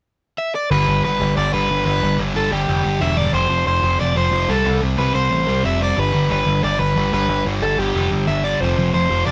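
Punk at a fast 182 BPM in G mixolydian, this rowdy, rebellious excerpt cut from a longer piece has the feel of a band playing live in one stone room with moderate reverb. A crunchy overdriven guitar carries the melody from 0.4 seconds, joined at 0.7 seconds by a sludgy, dark, double-tracked distorted guitar riff and a growling, bright picked electric bass, all three pushed up front. The chords move from G through F5 and C5 back to G before ending on F5.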